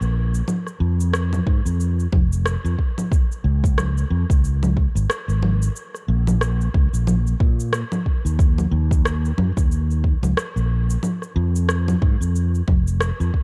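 Organic downtempo at 91 BPM with a 16th-note swing and an earthy, warm mood, this fragment of a longer piece pairs an up-front, round, amped fretless electric bass, treated with analog chorus and sidechain pumping, with produced electronic shaker, congas and rim click in a small room reverb, joined at 1.5 seconds by a deep, layered electronic kick drum sitting up front, all within a dark production tuned to A4 = 438 Hz.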